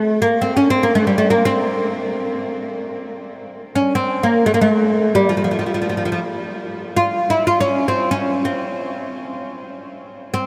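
Stately and warm, this Turkish recording is a short excerpt from a longer piece, carried entirely by a solo oud from 0.0 to 10.5 seconds. The fretless, plectrum-plucked instrument has a bright, woody tone, and its double strings give each note a rich, doubled body. Its range runs from F3 to F4, so the line sits in a deep register and stays close and up front in the mix. A huge ambient reverb, with a decay of 7.3 seconds, places the oud in a vast, echoing space, and each phrase lingers long after it is played. The result feels both intimate and grand, a lone voice suspended in a cavernous hall.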